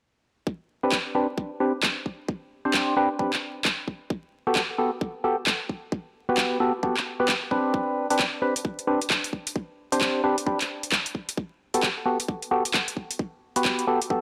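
A dry, gritty hardware recording with vinyl crackle and a moderate plate reverb carries this soulful, moody two-step UK garage cut at 132 BPM with a swung 16th feel: a tight, layered electronic kick enters at 0.5 s, a hollow, nasal organ stab with chorus and analog delay joins at 0.8 s over Csus2, Gmaj9 and Gadd11/C chords, and an overdriven garage kit of handclaps and metallic hi-hats sits up front from 0.9 s.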